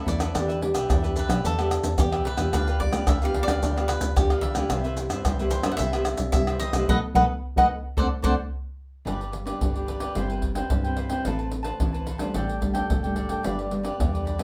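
A lively, playful samba and choro groove in straight 4/4 at 110 BPM opens in E minor, with up-front acoustic percussion of maracas, pandeiro, tamborim and deep surdo alongside a crisp picked cavaquinho melody that stops at 8.3 seconds, while a second cavaquinho, a thumb-plucked classical nylon-string guitar and a punchy, funky, wave-folded analog bass carry the accompaniment through a band accent from 6.9 seconds and a turn to G major at 9.1 seconds, all heard as a band playing live in one small, reverberant room in this short piece cut from a longer performance.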